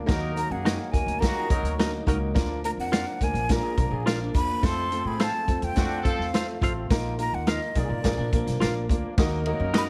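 Uptempo 1960s-style soul at 106 BPM in Eb harmonic minor, passionate and urgent, where a breathy jazz flute with soft attack and expressive vibrato carries the melody from 0.4 s over punchy, up-front vintage drums, a woody, thumpy pizzicato upright bass, clear concert grand piano accompaniment, a tight horn section playing a second line, clean hollow-body semi-hollow guitar stabs, a slightly broken-up riff from an electric guitar through a small old amp that sits in the background with ensemble chorus from 1.2 s, and very quiet, fat tonewheel organ chords with key click, all moving through Ebm, Bb, F and Bbsus4 in small room ambience with vinyl crackle.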